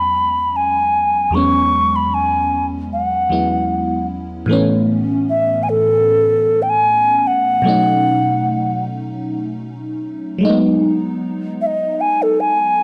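A dry, gritty recording with light reverb carries this longing, moody R&B passage at 76 BPM with a gentle 16th-note swing, where an airy, hollow clay alto ocarina sings the tongued, vibrato-laced melody up front over a lush, detuned FM electric piano layered with a soft pad, shimmering with chorus and phaser, as the harmony moves from E6/9 to Aadd9 at 4.5 seconds, then through B9 to G#m7 before the cut.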